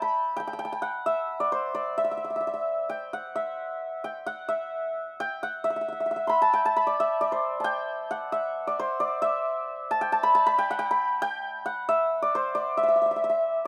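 A lone santur opens this radiant, devotional Indian classical passage, its shimmering, ringing tone sitting up front and staying between C5 and C6 in straight 4/4 time at around 133 BPM. The pulse gradually speeds up across the 13.7-second fragment of a longer piece, with a new section arriving at 5.6 seconds. The small-room ambience and rough home-demo mix give it an intimate, informal character.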